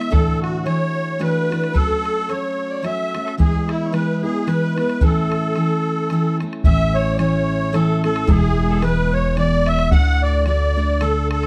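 A reedy musette accordion, shimmering with plate reverb, carries the melody from the start of this cheerful, lively Celtic waltz in 3/4 at 110 BPM in A major, joined by a nasal, bowed fiddle second line in the background, an up-front jumbo steel-string guitar picked with audible finger squeak, and a close, boomy bodhran. At 6.7 s a woody, thumpy pizzicato upright bass enters on gut strings as the tune moves into a new section over chords such as E and D. The production is dark and warm with moderate studio reverb, a gently swung lilt, and a slightly low tuning of A4 = 436 Hz, and the clip is cut from a longer piece.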